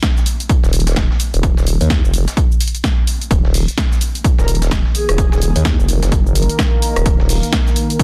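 Bass house at 128 BPM in Eb minor with a 16th-note swing, this aggressive, swaggering excerpt is driven by a punchy, up-front electronic kick, a layered house kit of snare, rim click, shaker and tape-warm hats, and a gritty sampler-style kit of hi-hat, snare and tambourine sitting in the background. A nasal, saturated vowel-sweep wobble bass enters at 0.6 s, dark and up front with chorus, overdrive and sidechain pumping, and an evolving detuned sawtooth pad joins at 3.3 s with a slow attack and a filter swell. A breathy, flute-like synth lead with vibrato, chorus and delay appears briefly at 4.4 s, all within a dense, heavily limited modern master and digital ambience.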